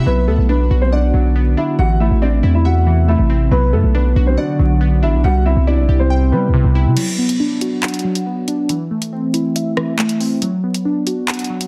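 Tense and ominous, this half-time drill cut at 139 BPM in B phrygian opens with a dark, woody, slightly detuned upright piano carrying the melody through delay. Glassy digital keys with chorus and a filter sweep sit beside it, alongside a warbling lo-fi pad in the background and a deep, sine-like 808 bass up front, all over faint vinyl crackle. At 7.0 seconds the piano, pad and bass drop out for a break where an overdriven electronic drum kit with bright hats, handclaps, rim clicks and crash joins the keys until 11.7 seconds, all within a dense, heavily limited master.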